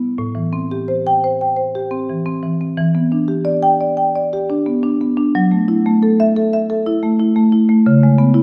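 This is a contemporary classical piece for solo marimba, warm and playful in mood, in a flexible 5/4 with a rubato feel. The marimba, played with medium mallets on rosewood bars, has a woody tone and sits up front. It plays alone throughout the 8.4-second excerpt, reaching from A2 up to G5. The harmony moves through Am7, Em7 and F#m7 before touching Dbm7 near the end. A lush recital hall reverb, heard from further back in the room, lets each struck note bloom and linger.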